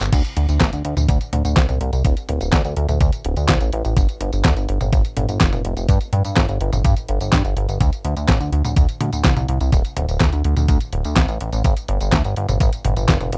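Italo disco at 125 BPM in a straight 4/4, this danceable, melodramatic passage is cut from a longer piece and runs about 13 seconds on a single section. A chorused synth bass sits up front, retro and glossy with a nasal edge, blending pulse and sawtooth waves with pulse-width modulation, a plucky filter, a moving notch, a fast attack and sustained notes between D1 and G2, colored by tube saturation and tape echo. A detuned 8-bit digital drum machine, also up front and overdriven, supplies crash cymbal, handclaps, hi-hat, a medium-tuned snare, tambourine and toms with a sampler-style grit. An electronic kick drum enters at 0.1 seconds and carries the loudest level of the parts, a thumpy, overdriven, sampler-style hit that stops at 13.2 seconds. Both drum parts sound re-recorded in a small room, and the whole is a dry, close 1970s-style studio recording with little reverb.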